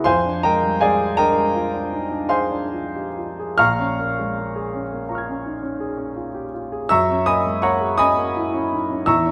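A grand piano sounds warm and present, placed up front in a recital hall whose moderate reverb lingers for about 1.5 seconds, and its notes carry a long sustain. This is a short excerpt from a longer piece of impressionist classical solo piano, nocturnal and mysterious in mood. The pulse is slow, 45 to 57 beats per minute counted in dotted quarters within a 9/8 metre, and the time is handled with a free rubato. The piano, tuned to A4 = 438 Hz, plays alone for the full 9.3 seconds, ranging from A#1 up to G#6. Its harmony drifts from Fm6 through A#m7 at 3.6 seconds to F#9 at 6.9 seconds, giving the passage a mysterious, nocturnal color.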